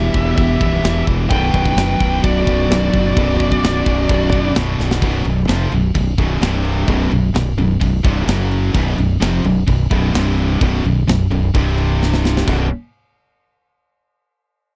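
A dry, close 1970s-style studio sound frames this aggressive, relentless heavy metal excerpt in B minor at 129 BPM, with an overdriven, punchy fingered bass growling up front over a tight acoustic kit with a medium-tuned snare, crash and kick. Two high-gain distorted guitars churn a picked riff in the background, joined by a very quiet, double-tracked overdriven guitar, while two bright high-gain lead guitars carry a melody and a lower second line until 4.5 seconds. The riff then moves through B5, C5 and F#5 power chords, and a drum fill at 12.0 seconds leads into a brief final section.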